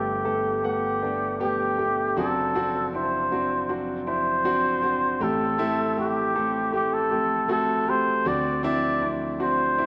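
A moderate, roomy reverb surrounds this short, melancholic pop passage cut from a longer piece, where a veiled cup-muted trumpet carries the emotional jazz-style melody up front with vibrato and scooped notes over a clear, natural grand piano accompaniment moving through Gadd9, D7/F#, Am7 and D7 for the full 9.9 seconds.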